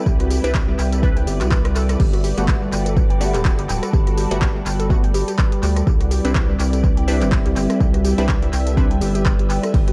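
An echo-heavy, digital-sounding ambience surrounds this soulful, sunny deep house cut, taken from a longer piece and swung lightly on the sixteenths. Up front, a deep electronic kick with tape-warm, gritty sampler character anchors the groove, while a dry, overdriven analog drum machine adds handclaps, hi-hat, rim click, tambourine, ride and crash, roughened by sampler grit and tape echo. A round, dark analog bass with a fast, plucked attack sits low and pumps against the kick. Muted, detuned dub chord stabs run through phaser, analog chorus and tape echo, and a nasal, lo-fi dusty pluck plays arpeggios with a filter sweep, chorus and echo. Behind them, a nostalgic, warbling tape-like pad with built-in reverb adds a sustained texture, while a silky, vintage string machine in the background holds sustained chords, both pumping with the beat. The harmony moves from Cmaj9 to Gmaj9 at 2.0 seconds and back to Cmaj9 at 5.9 seconds.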